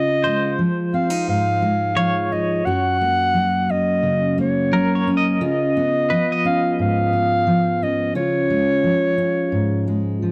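An acoustic folk-pop ballad at 87 BPM in Db major, this nostalgic, intimate excerpt pairs an up-front clarinet melody, mellow and subtoned with vibrato and a soft, jazz-tinged attack, against a full-bodied fingerpicked dreadnought steel-string guitar whose finger squeaks sit close in the mix. A quieter clean electric guitar, bright and twangy with tremolo, adds picked arpeggios from 0.2 to 7.7 seconds over a progression moving from Dbadd9 through Gb and Db7 back to Db. The sound is dry and close, like a 1970s studio session.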